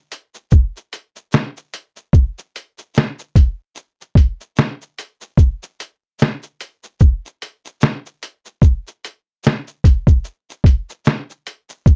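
A swung 16th-note groove at 74 BPM in 4/4 drives this mellow, cosy hip hop fragment, where a lo-fi sampler-style drum kit of hi-hat, shaker, thumpy kick and fat snare sounds compressed, pitched down and muffled, sitting up front in a dark, dry mix from 0.1 to 12.0 seconds.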